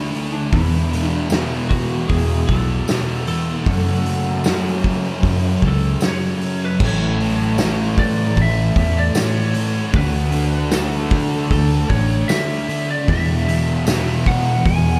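Wistful and blissful, this 76 BPM shoegaze and dream pop rock excerpt in A major drifts through a dreamy mix soaked in huge ambient reverb, where a twangy, lightly driven lead guitar sings the melody through lush chorus and analog delay over riffs from an overdriven hollow-body guitar with reverse reverb and a thick, up-front fuzz guitar, a fat-snared, punchy loose indie drum kit entering at 0.1 seconds, a round, foam-muted vintage bass joining at 0.5 seconds, and a jingly tambourine tucked in the background, as the chords move from D through E7sus4 and F#m to A, D and E5.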